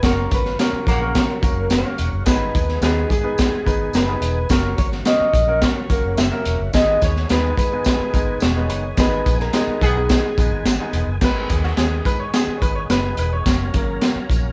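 Urgent and passionate, this cut from an uptempo 1960s-style soul number has a twangy, slightly broken-up electric guitar carrying the melody until 10.6 s over a crunchy breakbeat kit with a punchy kick and high-tuned snare, a round, foam-muted bass, a clear grand piano, a thick, overdriven organ with slow rotary speaker in the background, a jingly tambourine and a tight vintage horn section, with band accents at the start and again at 9.0 s before the piano takes a solo from 11.2 s, the band playing live in one room with moderate reverb.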